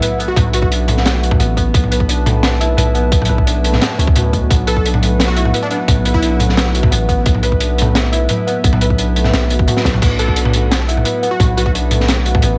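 A gritty, saturated breakbeat kit with a high-tuned snare and dark cymbals sits up front in this tense, spacious half-time drum and bass excerpt, joined by a tight, layered electronic kick, a deep sine 808-style bass, a felt-muted upright piano playing mellow arpeggios with tape echo and audible action noise, and a detuned analog pad holding sustained chords in the background with chorus and sidechain pumping, while brief punchy sawtooth lead phrases ring through a digital delay, a drum fill lands at 9.8 seconds and a very quiet pulsing gated texture enters at 10.0 seconds.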